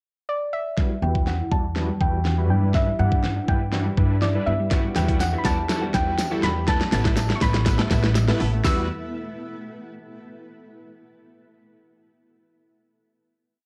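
A syncopated pop beat from an electronic, layered drum kit drives this confident dance-pop piece at 122 BPM in 4/4, its knocking kick and fat snare sitting up front, with a drum fill running through the build. Underneath, a woody pizzicato upright bass plays off-beat lines with sidechain pumping, while a detuned sawtooth polysynth plays syncopated chords through a low-pass filter and cassette tape coloring. A soft, round pluck carries a dark, motif-based melody in song-like phrases, dressed in chorus and analog delay, and a very quiet unison pluck ripples through rising and falling sixteenth-note arpeggios. A blurred granular cloud pad drifts in at 2.5 seconds, and at 4.7 seconds a choppy, funk-style clean electric guitar riff with lush chorus joins in the background, along with a jingly tambourine on the backbeat. Moving through Emadd9, G6 and Asus2 in E minor over a filter-sweep build, the piece settles on a final Emadd9 chord at 8.6 seconds, with light reverb and the homespun character of a cassette home recording.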